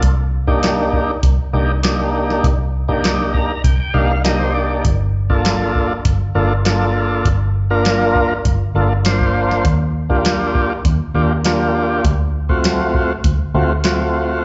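A thick, lightly overdriven tonewheel organ sits up front, its slow rotary speaker and slapback echo adding a smoky shimmer as it comps through Cm7, Gm7, Ebmaj7 and D7#9, with a fill from 3.0 to 4.8 seconds. This mournful straight-eighth soul blues in G minor moves at 100 BPM over a dark, round, foam-muted fingered electric bass and a soft vintage rhythm box with a deep kick, crisp snare and metallic hats. Cut from a longer piece, it sounds like a live gig heard through the venue's PA, with club reverb and a dull, rolled-off top end.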